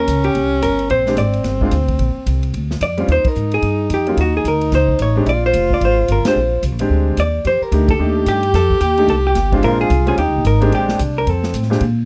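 Swung eighths in 4/4 carry this short cut from a longer small-group jazz piece in the swing and bop tradition, relaxed and warm in mood. The drum kit keeps time on hi-hat, ride cymbal, snare and kick, with a polished, airy sound, a medium-tuned snare and a punchy kick, sitting lower in the mix than the upright bass, whose woody, thumpy pizzicato sits up front. A vintage hollow-body electric guitar carries the melody in a dark, clean, compressed tone, while a breathy tenor saxophone plays a second line with a subtone, soft attack, vibrato and scooped notes. A baby grand piano joins at 1.1 s with clear, intimate accompaniment, long sustain and audible action noise, and the whole band hits several accents together over extended harmonies such as Bb13 and F13. The recording is dry and close, in a 1970s studio style.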